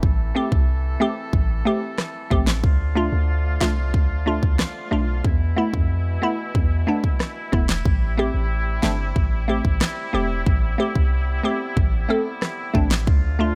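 Sultry and tough, this dancehall excerpt at 92 BPM in A minor sets a punchy, fat-snared pop drum kit with rim clicks up front over a deep, boomy 808-style bass, while a glassy, crystalline wavetable pluck with chorus and sidechain pumping enters at 0.3 seconds over a clear woodwind section holding pumping sustained chords through Am7, Dm and Esus4, all in a dry sound.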